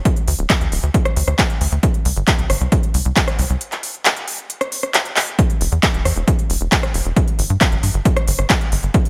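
Uplifting trance at 135 BPM in a steady 4/4, driving and emotional, cut from a longer piece. A punchy, overdriven electronic kick and a crisp big-room dance kit with handclaps, hi-hat and rim click sit up front, while a tight sawtooth-and-square sequencer bass with a plucky filter and moving notch pumps against the sidechain. The mix is dry, with a break from 3.6 to 5.4 seconds and a drum fill at 5.2 seconds.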